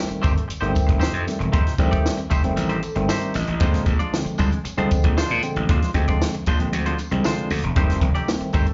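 A straight 4/4 groove at 116 BPM drives this energetic funk clip from a live gig heard through the venue's PA with club reverb and a dull top end, where a compact cocktail drum kit with a high-tuned snare and tight kick sits up front beside a growly, overdriven slap bass, while a tine electric piano stabs over F9 and Bb9 chords with slapback echo and a fill at 2.6 seconds, a clean semi-hollow electric guitar shimmers with lush chorus, and a jingly tambourine rattles in the background.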